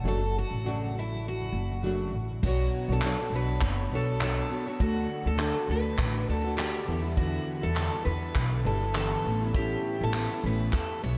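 This heartfelt, sunny acoustic pop excerpt in D major opens with a full-bodied picked steel-string guitar carrying the melody, touched with subtle chorus and a diffuse ambient delay, over a double-tracked, fingerpicked nylon-string guitar and a woody, up-front pizzicato upright bass. At 2.4 seconds a brush drum kit with dark cymbals and a punchy kick joins, and crisp group handclaps sit barely audible from 3.0 seconds, while the chords move from Dmaj7 through Bmadd9, D, Em7 and Aadd9. The lightly swung 101 BPM groove floats in a dreamy mix soaked in huge reverb.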